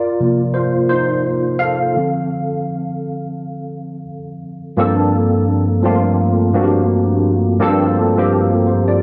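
A light 16th-note swing in 4/4 carries this sultry, introspective R&B fragment, cut from a longer piece, where a solo tine electric piano, clean and warm through a combo amp with ensemble chorus, sits up front and spans a range from low to high register. The harmony moves from C7sus4 to Dm7 at 1.9 seconds before settling onto Gm11 at 4.8 seconds as the second section begins. A moderate echo chamber reverb with a 2.3-second tail surrounds the piano.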